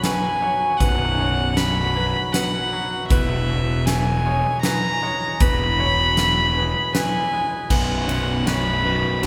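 A reedy, gut-string violin with light vibrato carries the melody up front in this cinematic, euphoric post-rock excerpt in 3/4, over background arpeggios from a mellow felt-muted upright piano with audible action noise and a clean, twangy electric guitar. A huge arena drum kit with bright cymbals, fat snare and punchy kick drives the piece, joined at 0.8 seconds by a fuzz-drenched picked electric bass. At 7.7 seconds a crunchy overdriven guitar riff pushes forward as the music starts to build, all bathed in the long reverb of a church or concert hall.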